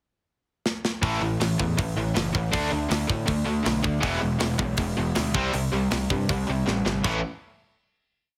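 Driving straight eighth notes at 160 BPM in 4/4 propel this short, rowdy punk rock piece, with a tight metal drum kit kicking it off through a pickup bar and a fill at 0.7 seconds. The kit sits up front in a studio room, its bright cymbals, medium-tuned snare and tight kick pounding out a fast punk groove. At 1.0 seconds, two overdriven electric guitars enter in the background with bright, picked, palm-muted eighth-note riffs, alongside a fuzz picked electric bass that stands up front, punchy and driving. The verse moves through A5, D5, E and C5 before another drum fill leads into a closing A5 chord at 7.0 seconds. Light reverb and heavy compression give the whole upbeat piece a squeezed, radio-like sound.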